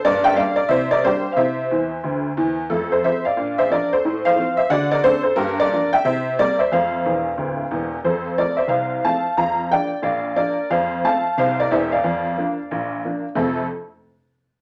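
Exuberant and playful, this stride jazz excerpt swings at a brisk 180 BPM in F major, with a lone honky-tonk upright piano carrying the whole performance from 0.0 to 13.6 seconds. The detuned, jangly piano sits up front with a boxy, vintage character, ranging from deep bass down at D1 up to bright treble at Bb5, and slipping in quick fills around 1.7 and 7.0 seconds. A wet studio reverb rounds out the room as the harmony moves through turns like D7, Gm7 and C7 before settling back on F.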